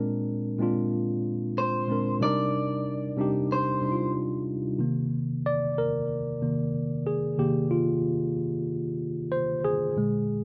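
A worn, slightly out-of-tune tine electric piano with slapback echo opens this sultry, smooth R&B excerpt in C minor at 93 BPM with a gentle sixteenth-note swing, moving from Bb9 to Cm9 as a compressed, slightly broken-up picked electric guitar, also carrying slapback echo, adds a brief melody from 1.6 to 4.1 seconds before the piano plays alone on Cm7 from 4.8 seconds, all under light reverb in an outdoor recording.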